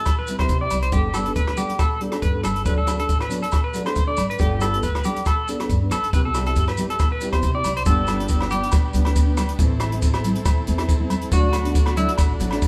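A sunny, joyful highlife guitar band excerpt swings along as a twangy, slightly broken-up electric guitar plays up-front arpeggios with harmonic tremolo over a punchy, natural cocktail drum kit of hi-hat, kick and rim click, ringing agogo bells and grainy maracas in the background, very quiet high-tuned congas, thumb-plucked classical nylon-string guitar and a woody, thumpy pizzicato upright bass on gut strings, all in a live room with moderate large-studio reverb, until a buzzy, heavily vibrato-laden overdriven combo organ enters with sustained chords at 7.9 seconds alongside a clean electric guitar solo.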